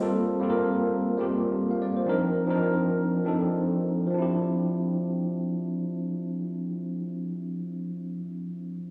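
Late-night and deep, this short amapiano fragment in 4/4 has a gently swung sixteenth-note feel, with a tine electric piano carrying the accompaniment alone from 0.0 to 8.9 seconds across a middle register. The piano sits up front, clean and warm, heard through built-in speakers and bathed in a lush hall reverb. Its minor eleventh chords drift from Gm11 to Cm11 before settling on Dm11 at 4.1 seconds, and the whole fragment carries the echo of a big sound system in a bare stone room.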